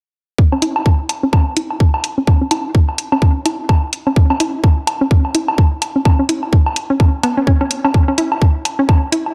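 Minimal techno with a clinical, cool mood and a swung feel, heard as a short cut from a longer piece, built on a tight, up-front electronic kick and bright, layered hi-hats. A hollow, bouncy square-wave pluck carries the riff, detuned with a noise layer and colored by chorus, cassette-tape grit, sidechain pumping and dub echo, while a filter sweep runs across this synth arpeggio from 0.4 to 9.3 seconds. A woodblock re-recorded in a large room adds echoing accents, all within a dark production and light digital ambience.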